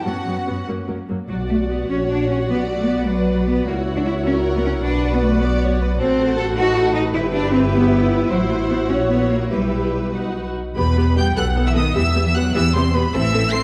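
Stormy and restless, this quick classical-period movement for string orchestra moves in a rubato 6/8 at 94-105 BPM, starting in B minor and turning to E minor from 6.0 s, with a close, smooth first violin section carrying the melody over a focused, distant second violin line, expressive violas, lush cellos and up-front double basses entering at 0.1 s, all bowed with vibrato in a dark production on a moderate scoring stage reverb.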